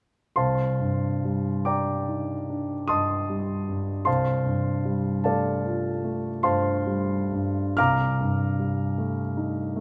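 A warm concert grand piano, deep in the bass and up front, plays alone in this nocturnal, mysterious impressionist classical fragment in a rubato 9/8, moving from Cmadd9 through Fadd9/C to Cm6 within a moderate scoring-stage reverb.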